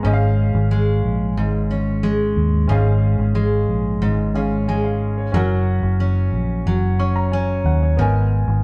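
Acoustic pop at 91 BPM in a straight 4/4, heartfelt and easy-going, this short cut from a longer piece moves from C#/G# to F# and lands on G#madd9 near 8.0 seconds. A bright, full-bodied jumbo steel-string acoustic guitar sits up front with audible finger squeak, alongside a concert grand piano with deep bass and short sustain, while a vintage foam-muted fingered electric bass adds a dark, round, amped low end. The band plays live together in one room, wrapped in a studio reverb with a 0.7-second decay.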